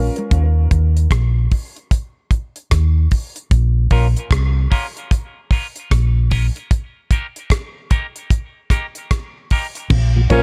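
A swung 75 BPM dub reggae groove in 4/4, spacious and deep, opens on a dark, round, foam-muted electric bass and a tight, dry 70s drum kit of kick, hi-hat, rim click and crash, with a worn, slightly detuned upright piano stab echoing on tape at the start, a clean picked electric guitar entering at 3.9 seconds, quiet thick-skinned congas at 9.9 seconds, and a fat tonewheel organ in the background, a returning piano stab and a raspy, gritty tenor saxophone arriving only in the final moments, all set in a small, echo-heavy room over Bbm and Eb chords in this cut from a longer piece.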